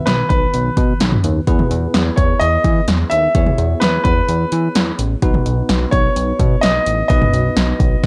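A clear baby grand piano carries the melody with a slapback echo, set up front over a bell-like tine electric piano, opening this upbeat, bright synth-pop excerpt cut from a longer piece. A mellow, chorused synth bass blending pulse, sawtooth and sine tones with a filter sweep joins alongside a punchy, overdriven deep house drum kit of deep kick, snare, hi-hat and toms, re-recorded in a small room. The dark production sits in light reverb and digital ambience as the chords move from B to E and back to B.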